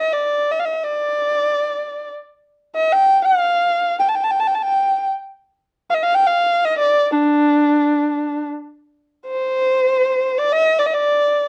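Persian modal music in dastgah shur on D, this short excerpt, cut from a longer piece, unfolds in free time with a hypnotic, soulful mood. A single bowed kamancheh plays alone throughout the 11.5 seconds, ranging from D4 to A5. Its tone is smooth, even and boxy, shaded by vibrato and gliding portamento, and it sits up front in the mix. A slapback echo trails the instrument, while light reverb leaves the dry, close sound of a 1970s-style studio intact. The opening phrase runs to 8.9 seconds before the same material returns to close the passage.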